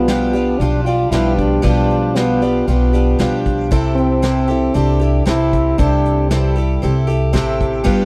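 A dry, close recording in a 1970s studio style, touched with light reverb, frames this gentle acoustic folk passage cut from a longer piece. A clear French horn carries the solo line in a classical manner and drops out at 7.0 s, leaving the band to finish the passage. Up front, a picked twelve-string acoustic guitar rings bright and shimmering with its octave doubling, a boxy parlour tone and audible finger squeak. A woody, thumpy upright bass, plucked on gut strings, sits close beside it, while a soft brush kit of hi-hat, punchy kick and medium-tuned snare gives a natural small-room feel. The harmony moves from G7/B to Am7/C at 3.7 s, keeping the mood gentle and warm.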